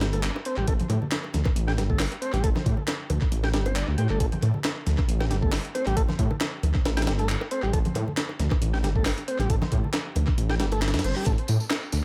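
A gritty, funky breakbeat groove in A minor at 136 BPM opens with a thick, menacing detuned saw bass and a compressed, pitched-up sampler-style drum kit up front, its thumpy kick and high-tuned snare carrying a tape-warm grit, while a smooth tonewheel organ riff turns slowly through its rotary speaker with tube saturation and tape echo. Layered electronic handclaps and tambourine ring out in a large room, and ringing, close bongos and congas played with soft hands sit in the background under the echo-heavy mix. A very quiet reverse cymbal rises at 10.7 seconds as the organ drops out at 11.3 seconds, leaving bass and drums to carry this excerpt to its cut at 12.0 seconds.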